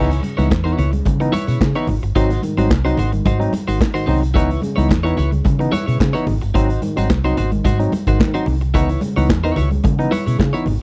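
In a small room, this danceable, glamorous disco cut pairs a punchy, up-front vintage drum kit of kick, snare, hi-hat and handclaps with a dark, round, foam-muted fingered bass, a barky, lightly overdriven tine electric piano, a clean, chorused electric guitar and bright congas in the background, all circling between C#m7 and G#7.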